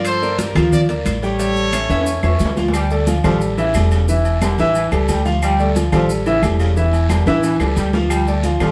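A live-in-one-room salsa fragment with wet studio reverb, this passionate, driving 179 BPM passage in D harmonic minor opens with a smooth-topped trumpet section over an intimate grand piano with audible action noise and a growly, thumpy pizzicato upright bass up front, while background congas, ringing timbales and agogo bells, woody claves, a raspy distant guiro and grainy maracas churn beneath, the trumpets stopping at 2.5 seconds before a brilliant, tight trombone section with light vibrato takes the second line from 2.7 seconds over a Dm, A7 and Em7b5 cycle, with drum fills at 1.9 and 7.3 seconds.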